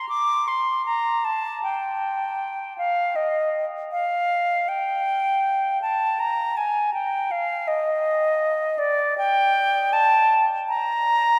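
Moving with a free, rubato pulse around 79 BPM in 4/4, this short passage from a longer baroque-style fantasia in G minor has a serene yet dance-like grace. A lone concert flute plays up front from 0.0 to 11.4 seconds, its pure, straight, tongued tone ranging from D5 to D6. A wet cathedral reverb with a 5.2-second decay sets it in a vast, echoing space.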